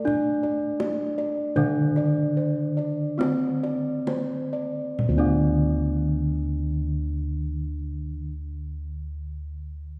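Javanese gamelan in a serene, shimmering mood, heard as a short cut from a longer piece that slows down over its first 5 seconds. A ringing bronze metallophone played with a wooden mallet carries the melody up front, while a second metallophone, paired in tuning so its tones shimmer with beats and sounding vintage and band-limited, provides accompaniment below. Bright, airy bossed gongs spin arpeggios above, mellow padded gongs hold the bass, and a tight kendang played with soft hands drops out at 5.9 seconds, all set in the lingering reverb of a church or concert hall.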